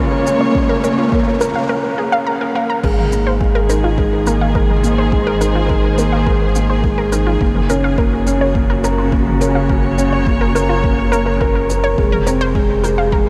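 Piano and strings electronica at 105 BPM in 4/4, this excerpt from a longer piece feels hypnotic and intimate, moving through Bbm, Abadd9, Gb and Fm under a dreamy mix soaked in a huge ambient reverb. A felt-muted upright piano carries the riff up front, its soft, mellow tone thick with felt and audible action noise, with delay trailing behind it. Around it, a distant chamber string section holds dark, bowed chords with expressive vibrato, while a lush, detuned sawtooth pluck spins arpeggios with a fast attack and short decay, both breathing with sidechain pumping. Underneath, a round analog bass with a nasal edge adds tube saturation and sidechain pumping of its own. A quieter deep house kit of crash cymbal, shaker and toms comes in almost from the very start, joined at 0.6 seconds by a punchy, overdriven electronic kick. The opening build-up runs to 2.8 seconds, with a background riser and a filter sweep on the arpeggio before a short break, and then the drop arrives at 2.8 seconds.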